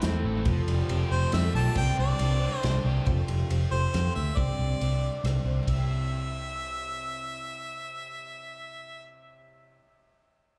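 An echo-heavy mix in a small room frames this jangly, open-road fragment of folk rock and heartland rock, set in three-four. A shimmering, octave-doubled twelve-string acoustic guitar with subtle chorus carries the accompaniment over a round, up-front fingered electric bass. A bright, overdriven garage guitar riff sounds only until 3.1 seconds, and a natural country drum kit with a punchy kick and dark cymbals plays until 5.8 seconds, while a clear, close-miked harmonica enters at 1.1 seconds with light vibrato and scooped notes, its melody trailed by analog delay.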